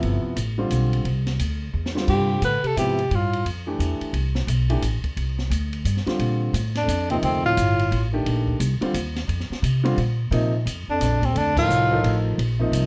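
A breathy, whispered tenor saxophone carries the melody in short phrases, its soft attack, vibrato and scooped notes sitting up front and intimate. A bass clarinet plays a second line beneath each phrase in a dark, close-miked subtone. This modal jazz excerpt moves at 175 BPM in a swung 3/4 with a spiritual, open mood, opening on G13sus4 in G mixolydian before shifting to Bbmaj9 and B-flat major at 6.2 seconds. A polished grand piano holds the accompaniment throughout, while a woody pizzicato upright bass with steel strings sits prominently underneath. The acoustic drum kit sits lower in the mix with dark cymbals, a high-tuned snare and a boomy kick, adding a fill just before the horns first enter at 2.1 seconds and a band accent at 11.5 seconds, all framed by light reverb and a natural studio room.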